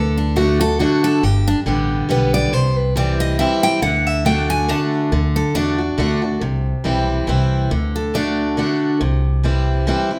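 A lively, joyful bluegrass waltz at 139 BPM in 3/4 with a swung eighth-note feel, moving through D, G and C in D mixolydian. Two picked steel-string acoustic guitars sit up front, one a bright, full-bodied dreadnought with audible finger squeak, the other a warm parlour guitar with fresh strings, carrying melody and accompaniment over a woody, dark pizzicato upright bass. A guitar solo takes over from 5.1 seconds, the melody line drops out at 8.8 seconds, and a large studio reverb gives the whole a roomy sheen in this fragment cut from a longer piece.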